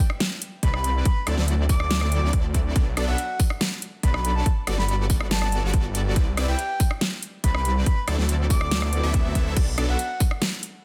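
A dubstep drum kit with a huge snare and metallic hats opens this playful, euphoric half-time future bass excerpt, joined at 0.6 s by an overdriven, hard-clipped electronic kick up front, a thick, detuned saw bass with tube saturation, a fat, bright polysynth riff and a breathy, flute-like lead carrying vibrato and tape echo, the three synths pumping under sidechain over Cmaj9, D9, Bm7 and Gmaj9 chords, before a very quiet electronic swell appears at 8.9 s in a dense, heavily limited mix.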